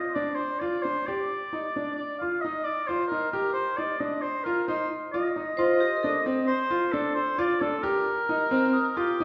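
Set in a reverberant recital hall, this hopeful, playful excerpt of contemporary chamber music in 5/4 features a solo oboe with a soft attack and light vibrato carrying the melody over clear, open concert grand piano arpeggios with deep bass, while a vintage, band-limited vibraphone struck with hard mallets adds a brief metallic second line with fast motor vibrato from 5.6 to 6.3 seconds, and a mellow, bell-like glockenspiel played with rubber mallets rings softly in the background from 5.6 seconds onward.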